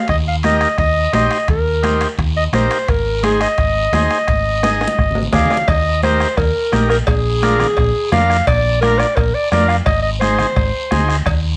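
Cumbia at 172 BPM in Eb major, with a sunny, danceable lift and a straight 4/4 feel, taken from a longer piece. A close-miked clarinet carries the melody up front in a classical style, its tone warm and punchy, while a hollow-body short-scale electric bass sits just as forward with a dark, amped, fingered sound. A vintage combo organ enters at 0.4 seconds with a buzzy, clean tone and light vibrato, filling in chords that move from Eb to Ab and later through Bb7. The percussion is layered: a soft-beater bombo and high-tuned, damped congas played with hard hands sit in the background, ringing metal-shell timbales and cowbell are close and dry, and a raspy guiro sounds distant, as if in a large room. A drum fill from 4.6 to 5.7 seconds marks the turn into the second section, and a light reverb gives the whole a touch of space.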